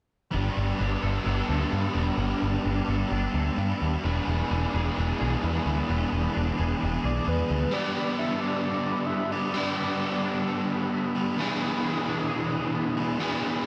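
Dreamy and hazy, this rock excerpt moves at 130 BPM in G major, cycling between Gadd9 and E7 inside a mix soaked in a long plate reverb. Two up-front overdriven electric guitars play riffs, one treated with lush chorus and the other with reverse reverb, while a bright, twangy clean guitar picks arpeggios in the background through ensemble chorus and analog delay. A round, punchy dub bass anchors the first half until 7.6 s, and a soft, detuned synth lead with vibrato, chorus and delay carries a short melody from 7.0 to 10.2 s.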